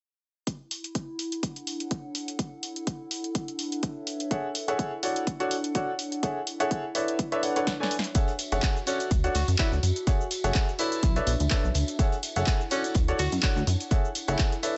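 A clear, woody upright piano riff enters at 4.3 seconds over a warbling, nostalgic tape-like pad with chorus and sidechain pumping, driving this bittersweet, energetic piano house piece at 125 BPM in F# minor, with a light 16th-note swing and chords moving through F#m9, Dmaj7 and Bm11. A punchy, layered electronic kick sits up front beside an analog drum machine of handclaps, hi-hat, shaker and snare, and after a drum fill the next section, from 8.2 seconds, adds a distant tambourine, a very quiet, gritty breakbeat kit and a plucky, funky, sidechain-pumped analog bass. A close-miked tenor saxophone with light vibrato, a soft subtone attack and tape echo then takes a jazz-style solo from 8.9 seconds, its tone warm.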